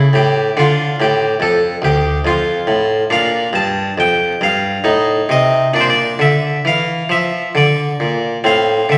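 A solo harpsichord opens this short excerpt from a baroque-style suite movement, its plucked tone round and mellow, set up front on a single set of strings in the French style. The movement sits in 3/4 at roughly 65-73 BPM, but the playing breathes with a free rubato that gives the line a serene, radiant calm. The harmony begins on A7 with its third omitted, settles onto D minor, then moves through Bb and F7 over A before returning to Bb and closing on F over A. The instrument covers a span from D2 up to A5. A recital hall's reverb, lasting about 1.3 seconds, surrounds the harpsichord with a generous halo, while a vinyl crackle adds a gently aged patina to the 9-second fragment.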